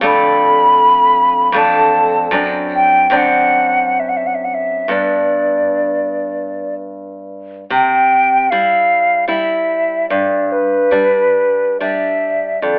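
Tender and gently romantic, this brief cut from a longer piece for flute and classical guitar drifts in 3/4 with a rubato feel between 62 and 80 BPM in C major, moving from Dm/F through D7/F# to G, reaching C around 7.7 seconds and turning to G at 10.1 seconds. A mellow, hollow silver concert flute carries the melody up front with vibrato and tongued notes, bathed in plate reverb, while the fingerpicked nylon-string guitar supports it from the start, its fresh strings and audible finger squeaks giving the accompaniment a close, intimate presence. The whole is heard through a moderate studio room and a telephone-like sound.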